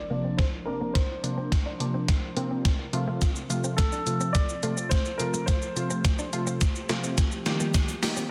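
Dance-pop excerpt with a euphoric, carefree mood, built as one long build-up with a filter sweep and a running drum fill over Bbadd9, F and Eb chords. A gated 80s drum machine sits up front with a thumpy kick and a gated-reverb snare, under a punchy, detuned polysynth comp that pumps with sidechain, a clean direct-recorded electric guitar riff in the background, and a glassy, ethereal FM pad held very quietly beneath. A clear, intimate grand piano carries the melody with delay until 7.1 seconds, while a very quiet impact opens the passage and a riser and grainy tube shaker arrive at 7.7 seconds, all under a dense, heavily limited master.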